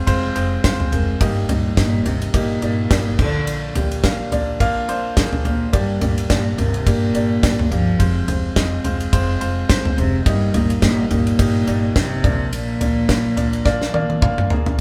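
Anthemic and warm, this piano-driven pop excerpt moves at 106 BPM in Bb mixolydian with a light 16th-note swing, its chords cycling through Fm, Eb/G, Bb and Gm. A natural-sounding grand piano with long sustain sits up front alongside a punchy acoustic country drum kit, while a pizzicato upright bass with a woody tone stays in the background and a single close, dark, bowed cello carries the vibrato-laden melody from 0.9 s. The band plays live together in a stone room with moderate reverb, and the piano and drums each play a fill from 13.7 s until the cut at 14.8 s.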